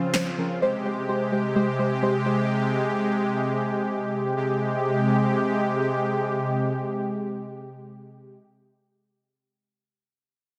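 A dense, heavily limited modern master bathed in a moderate plate reverb opens this euphoric, carefree pop fragment at 128 BPM in Ab major, moving from Dbmaj7 to Abmaj7. Up front, a deep, dark, wave-folded chord stab with a fast attack and decaying tail, colored by chorus and phaser, plays accompaniment until 2.4 seconds. A smooth, evolving supersaw of detuned unison sawtooths holds mellow sustained chords through to 8.4 seconds.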